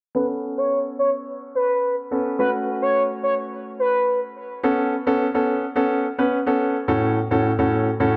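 Euphoric and upbeat, this short pop excerpt moves at 107 BPM in a straight 4/4, set in A major and cut from a longer piece. A warm grand piano carries the accompaniment from start to finish, polished and up front through a low-pass filter, ranging from A2 to B4 over a cycle of Aadd9 and F#m/A. An expressive portamento lead, a smooth sawtooth voice with a fast attack, vibrato and a mellow sustain, sings the melody between B4 and C#5 from 0.2 to 4.2 seconds, dressed in chorus, digital delay and its own low-pass filter. A filter sweep runs through the opening section until 4.6 seconds, after which the piano continues alone through the second section. A moderate, lush hall reverb and a dark, warm production give the whole a warm, enveloping glow.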